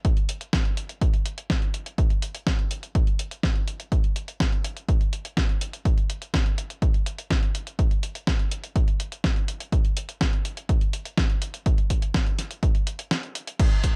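From the first beat at 0.0 seconds, a punchy analog kick drum and a clean 12-bit digital drum machine start together, setting a straight 4/4 italo disco groove at 124 BPM. The mood is playful and sunny. The kick sits up front with a large-room character, and it is the louder of the two parts. The sampler-style drum machine supplies crash cymbal, hi-hat and a medium-tuned snare, also up front but with the feel of a small room. The whole passage is one section with little reverb, broken by a short break at 13.1 seconds. Both parts run to 13.9 seconds, where this piece, cut from a longer track, ends.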